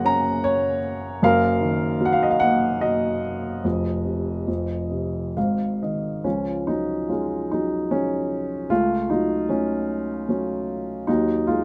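A dark, woody upright piano opens the recording on its own, playing a tender and peaceful classical solo in a lyrical, rubato triple metre. Its mellow tone has long sustain and sits up front, caught by close, detailed microphones in a dry space with little reverb. The harmony drifts from Gb through Ebm/Gb toward open fifths on F and Ab. At 4.9 seconds the piano plays a short fill that leads into a new section at 6.2 seconds, settling on Db before a shadowed Gbm/Db and a closing turn to Ebm. The playing ranges from deep bass notes up into the upper treble, and the passage feels lifted from a longer piece.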